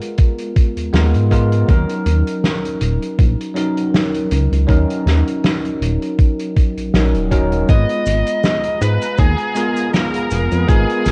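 A lightly swung 80 BPM 4/4 groove of thumpy, gritty electronic kick and a distant, roomy soft-mallet kit of cabasa, hi-hat and fat snare drives this melancholic, nostalgic vaporwave excerpt in G# dorian, where a bell-like tine electric piano with lush chorus and analog delay and a dark, glossy chorused synth bass move between G#m69 and D#m7 before a biting overdriven lead guitar with tape echo enters at 7.7 seconds and a thick, detuned unison pad drifts in behind it at 8.2 seconds, over a worn, warbling cassette-tape sound with light small-room reverb.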